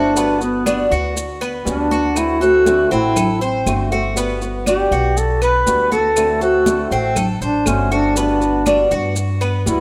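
A straight 4/4 pulse at 120 BPM drives this danceable, warm snippet of Cuban son and guajira in G major, cycling through Gmaj7, D9 and D7. A mellow, distant duduk carries the solo melody up front with vibrato and scooped notes, over a dark, boxy fingerpicked old ladder-braced acoustic guitar, bright metallic tres arpeggios on double strings, and a growly, thumpy pizzicato upright bass. Ringing high-tuned congas and grainy, close maracas join at 0.2 seconds, with woody band-limited claves tucked in the background from 0.7 seconds, all set in a lush hall reverb on a rough home demo mix.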